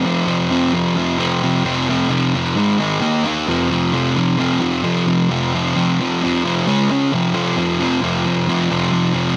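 Lightly reverberant with a digital ambience, this raw, gritty rock excerpt in F minor at 132 BPM, tuned to A4 = 437 Hz, features a lone double-tracked, picked electric fuzz guitar, distorted and up front, playing power chords on F5, Ab5, Eb5 and Db5 from 0.0 to 9.4 seconds.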